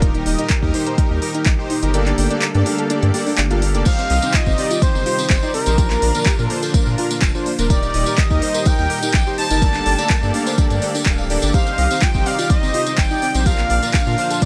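A straight 4/4 pulse at 125 BPM drives this expansive progressive house excerpt in C dorian, its deep, up-front electronic kick dropping out from 1.9 to 3.9 seconds beneath smooth hi-hats, handclaps and crash cymbal from a deep house kit, while a round analog bass, a dark background pad with chorus, a gentle filtered pluck arpeggio with cassette-tape color and dub echo, and mellow supersaw stabs all pump against the sidechain; at 3.9 seconds an expressive, vibrato-laden synth lead enters alongside a very quiet supersaw second line and a jingly vintage tambourine, all over a dry Eb, Gmadd9, Cm, Bb progression.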